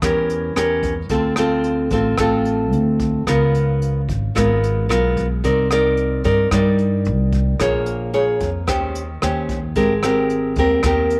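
Bossa nova with a romantic, sunny mood, cut from a longer piece, where an up-front, warm, fingerpicked classical nylon-string guitar carries the accompaniment through colorful jazz chords from A7b9 to Abmaj9, over woody pizzicato upright bass and a softer brushed drum kit of hi-hat, rim click and boomy kick, all in a light studio reverb with a faint mains hum.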